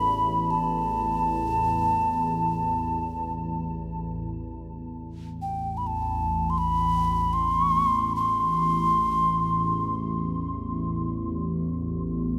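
A breathy, hollow clay ocarina with a crisp attack carries a haunting, spacious melody up front until 10.0 s in this free-time world meditation fragment in A minor, floating over a deep, moody drone from a detuned, ring-modulated sawtooth pad with chorus that sustains to 12.4 s, while a pure, very quiet quartz singing bowl rings only through the first 2.2 s, all set in a huge, wet reverb.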